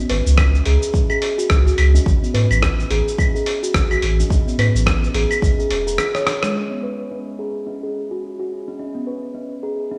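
Organic downtempo in C# minor at 107 BPM with a 16th-note swing, earthy and mystical, cut from a longer piece. A steel tongue drum, struck with firm rubber mallets, plays ringing, meditative arpeggios up front through a low-pass filter and tape echo, while a round sine sub bass with sidechain pumping, a deep electronic kick and a gritty, compressed sampler-style kit of cabasa, claves, hi-hat and rim click carry the groove, shifting from C#5 to Amaj7 at 2.1 seconds. After a drum fill, the kit stops at 6.5 seconds and the tongue drum plays alone under a filter sweep until 10.0 seconds, all set in light studio reverb.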